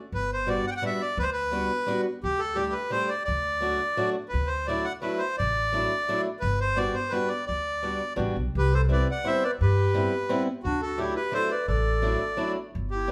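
Set in a straight 3/4, this whirling, charming musette waltz puts a reedy, close-miked accordion melody up front over a woody, thumpy pizzicato upright bass and a boxy, fingerpicked swing-style acoustic guitar, and a warm clarinet with a soft attack and smooth top joins them with a second line at 8.6 s, the band heard playing live together in a large studio with moderate reverb.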